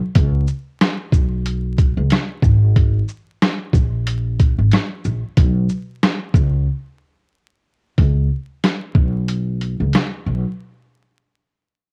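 This dark, moody boom-bap hip-hop clip opens on a sampler-style drum kit that sits up front, its thumpy kick, medium-tuned snare, rim click, hi-hat and shaker sounding compressed, pitched down and gritty with a cassette tape coloring. At 92 BPM in 4/4, the groove carries a 57% swing on the sixteenths, giving it a loose, head-nodding feel. A pizzicato upright bass with steel strings joins at 0.2 seconds, woody and up front, moving between G#1 and C#2 with a touch of transformer saturation. The whole clip sits in a home-recorded cassette atmosphere with digital ambience and vinyl crackle. Breaks arrive at 6.7 and 9.3 seconds before this short fragment of a longer piece cuts off.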